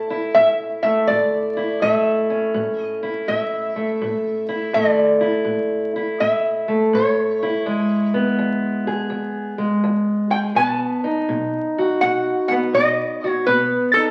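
Heard through the crackle of a very old 78 rpm record and a wet, large studio reverb, this short cut from a longer acoustic country blues piece has a swaggering, laid-back air. It moves at 82 BPM in 4/4 with a swung eighth-note feel, as a lap resonator guitar and a fingerpicked steel-string acoustic guitar play together up front from start to finish. The resonator carries the melody with slide and fingerpicks, its metallic, nasal voice ringing in a higher register. Beneath it, the parlour-style acoustic supplies the accompaniment, dark and boxy with the woody tone of old strings. The harmony sits on A before shifting to E at 7.6 seconds and B at 10.6 seconds, closing the 14.1-second passage.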